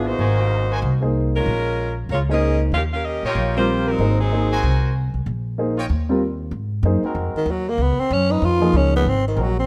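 Close, detailed microphones and light reverb give this brief cut from a longer jazz piece an intimate, up-front sound, swinging joyfully at 190 BPM in Ab mixolydian. A smooth-topped saxophone section carries the melody with light vibrato until 4.8 s, over a warm baby grand piano whose action noise is audible, a woody, dark pizzicato upright bass, and short, bright trumpet-section stabs. Clear trombone-section chords are sustained from 7.0 s, and at 7.4 s a breathy, raspy, growling tenor saxophone takes the solo and plays to the end.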